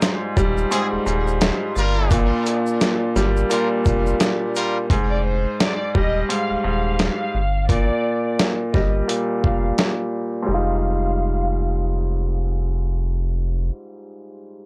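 A gritty, overdriven sampler-style drum kit with a thumpy kick drives this dark, tough boom-bap hip-hop piece at 86 BPM in F dorian, joined by a deep sine-and-triangle sub bass, a brilliant, up-front concert grand piano on Fm9 and Gm7 chords, a fat, percussive tonewheel organ with key click and a grainy tube shaker sitting in the background, pop-style trumpet stabs with tape echo from 0.7 s, and a smooth violin section carrying the melody from 5.1 s, in a dry hardware recording.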